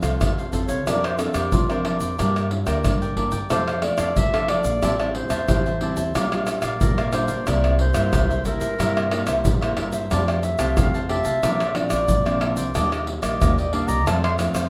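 A crisp, picked cavaquinho and a fingerpicked classical nylon-string guitar open this sunny, joyful samba and choro excerpt at 91 BPM in F major. A woody, thumpy pizzicato upright bass on gut strings and a percussion group of egg shaker, pandeiro, tamborim and deep surdo play alongside them from the start. The percussion sits a little louder than the strings. At 0.7 seconds a mellow clarinet enters and takes the solo in a jazz style, with light vibrato and scooped notes, ranging from F4 to C6. The harmony moves from F through Gm, Am7 and C7 before touching Fadd9, Bbadd9 and Ebmaj7 and returning to F. A moderate studio reverb gives the acoustic ensemble a gentle sense of space.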